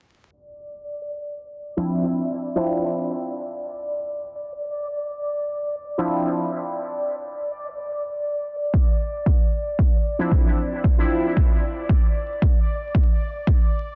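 Dub techno at 114 BPM in D minor, hypnotic and meditative, built on a bubbling, resonant sawtooth texture with random filter steps, chorus and its own reverb, pumping under a filter sweep. A juicy, bright polysynth, up front and resonant, drops chorused, phased stabs into dub echo from 1.8 seconds. A dry, punchy, overdriven analog kick arrives at 8.7 seconds. The dense, heavily limited master carries vinyl crackle, a low-pass filter and light reverb.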